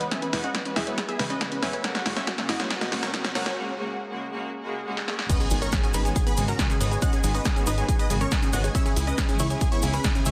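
A straight 4/4 pulse at 139 BPM drives this euphoric uplifting trance excerpt, with a heavy, tape-warm electronic kick and a punchy analog drum machine of snare, hi-hat and crash both up front, while a plucky sawtooth bass, detuned supersaw stabs through cassette tape and tape echo, lush unison pluck arpeggios and clear symphonic strings in the background all pump against the sidechain. The opening build-up carries drum fills, a filter sweep on the pluck and a very quiet riser, then a brief break and swell lead into the drop at 5.3 seconds, where an impact hits and the harmony moves from Eadd9 and F#add9 to G#m7 and C#m. From the drop, a bright, catchy unison lead with chorus and vibrato sits high in the background beside a grainy tube shaker, all under light reverb and a dense, heavily limited master.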